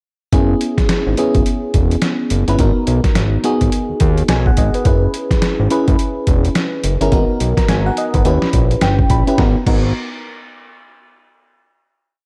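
A hard-swung, bouncy new jack swing groove drives this confident, complete R&B piece, built on a gritty, pitched-down sampler-style drum kit with a thumpy kick, medium-tuned snare, hi-hat and crash. A fat, detuned analog synth bass plays a saturated synth-funk line full of muted ghost notes and chromatic approach notes, while a warbling vintage FM electric piano with a phaser plays mellow rootless push chords. In a dark production with light reverb, the piano adds a short fill at 8.5 seconds before the closing minor-seventh chord arrives at 9.4 seconds.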